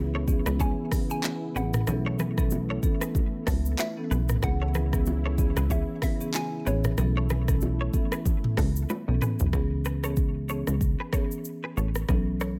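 A dry sound with little reverb frames this smooth, sultry afrobeats cut from a longer piece, moving at 94 BPM in 4/4 with a swung sixteenth feel in C# minor. An up-front electronic drum kit with a deep kick, dark hats, handclaps, rim clicks, shaker and toms drives the groove alongside a punchy, funky analog bass whose wave-folded, filter-plucked tone starts fast and decays. A dark, smooth marimba played with medium mallets carries the accompaniment, while a clean, twangy, direct-recorded electric guitar with a scooped, compressed tone picks a riff through ensemble chorus and delay. Above them a woody, round FM synth pluck with a noise layer sings the melody through chorus, phaser and delay, a detuned sawtooth pad holds soft sustained chords under chorus, and very quiet bongos and congas add a bright acoustic touch. The chords alternate between C#m7 and B9sus4, and a drum fill at 8.9 seconds leads into a new section at 9.5 seconds, where the pluck, pad and hand percussion have dropped out, leaving the kit, bass, marimba and guitar to carry on.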